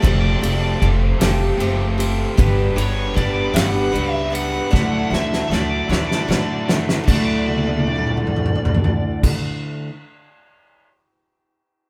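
A hopeful folk rock and heartland rock excerpt in D major opens with the full band playing live in one room: a shimmering, octave-doubled twelve-string acoustic guitar, a bright, double-tracked overdriven guitar riff, a woody pizzicato upright bass and a soft, flute-like tonewheel organ with key click and slow rotary speaker sitting very quiet beneath. A distorted, bluesy lead guitar carries the melody over a 51 BPM 6/8 pulse as the chords move from Fadd9 to G to Dadd9. The up-front, natural country drum kit, with its fat snare and tight kick, adds fills from 4.7 and 7.5 seconds. Once the twelve-string and the riff guitar stop at 9.9 seconds, it plays on alone until 10.9 seconds, all in a moderate studio reverb.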